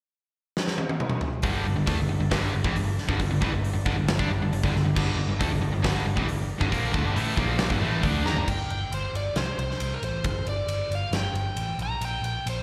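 A huge arena drum kit with a fat snare and punchy kick opens with a fill at 0.6 seconds, launching an aggressive, driving hard rock passage in G minor at 136 BPM, where a bright cranked stack guitar up front and a dark, sludgy distorted guitar behind it play a riff with slapback echo over round picked electric bass and a very quiet, gritty tonewheel organ on slow rotary speaker holding sustained chords, until a bluesy overdriven lead guitar takes up the melody at 8.3 seconds, all heard live through a venue's PA with recital-hall reverb.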